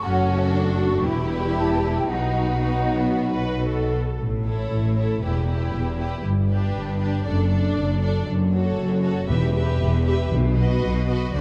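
A straight 4/4 pulse at 117 BPM drives this cinematic, determined and adventurous passage in E dorian, cut from a longer piece. A bowed violin section carries the melody with focused vibrato and a smooth top, while a second, clearer and closer violin section plays a supporting line beneath it. Violas fill in the accompaniment with intense vibrato, and lush, even cellos and up-front double basses anchor the bass. At the opening, an airy, tongued flute ensemble adds an expressive second line and a mellow French horn section holds sustained chords, both falling away at 3.9 s. The harmony moves from F#m through Em and B into a broader passage touching A, G and D/F#. Hard-mallet timpani with calf heads enter at 9.3 s, articulate but set in the background, all within a moderate scoring-stage reverb and a dark production.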